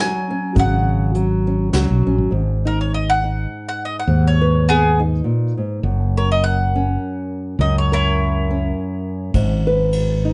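A picked, double-strung mandolin and a small-sounding, fingerpicked nylon-string guitar with audible finger squeak open this nostalgic, hopeful acoustic folk excerpt in a swung triple metre, joined at 0.6 seconds by a round, dark fretless electric bass and a natural-sounding brushed drum kit with a punchy kick. The brushes drop out at 1.9 seconds, leaving the up-front mandolin to carry a solo from 2.3 seconds over the guitar's accompaniment and the bass's low line. The drums return briefly near the close, all within a light reverb and a soft top end.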